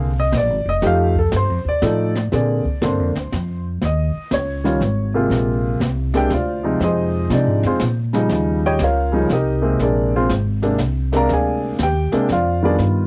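A home cassette recording with light reverb captures this short, playful jazz piano trio cut from a longer piece, swinging in 3/4 at 120 BPM in Bb mixolydian. An intimate baby grand with audible action noise carries the melody up front, its tone colored by cassette tape, while a woody, growly pizzicato upright bass sits close beside it. Brushes on a medium-tuned snare, hi-hat and a boomy kick join at 0.3 seconds, also tape-colored, as the harmony moves through ninth and seventh chords such as Bb9, Eb9 and Fm7.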